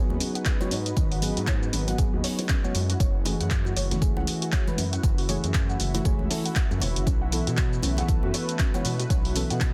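Deep house at 118 BPM in F# dorian, smooth and hypnotic, where an overdriven up-front kick entering at 0.5 seconds anchors a punchy dry drum machine of handclaps, hi-hat and shaker, a gritty background breakbeat kit with a high-tuned snare and tambourine, and very quiet bongos and congas, beneath a gliding sawtooth bass with portamento, round FM electric piano stabs with tape echo, a detuned analog pad with chorus and tremolo, a lo-fi warbling pluck playing arpeggios, and an ethereal airy pad with reverb, all except the percussion pumping to the sidechain over G#m7, F#m9 and B7sus4 chords in a dense, heavily limited mix.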